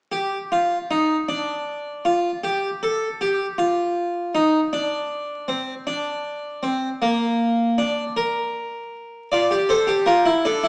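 The recording has a worn, lo-fi character, with vinyl crackle and a small-speaker tone set inside a generous recital-hall reverb that lingers about 1.5 seconds. This is a short cut from a longer classical piece: a baroque-style three-part fugue for solo harpsichord, solemn and serious in mood. It moves at a stately 52 beats per minute, counted in dotted quarters in a straight 12/8. The Flemish-style harpsichord sits up front, its plucked tone made full by two sets of strings, and it plays across a compact span from Bb3 to D5 from 0.1 to 10.7 seconds. The contrapuntal lines unfold before the harmony arrives on an Em7b5 chord at 9.3 seconds.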